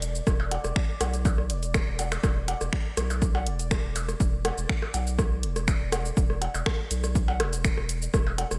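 This minimal techno excerpt has a clinical, quirky mood and a straight, steady pulse, all built around a single E5 chord. A deep, thick sub bass with a saturated sine tone sits up front from the start, its sustained notes pumping under sidechain compression. Alongside it, a dry analog drum machine plays finger snaps, hi-hat and shaker, roughened by overdrive and set in studio and gated reverb. An overdriven electronic kick drum lands at 0.3 seconds, punchy and up front, joined at the same moment by rim clicks and percussion blips that were re-recorded in a small room and treated with gated reverb and digital delay. In the background, a resonant sawtooth texture bubbles through random filter steps, softened by chorus, built-in reverb, a soft attack, a long release and its own sidechain pumping. The production is bright and 1980s-styled, with only light reverb.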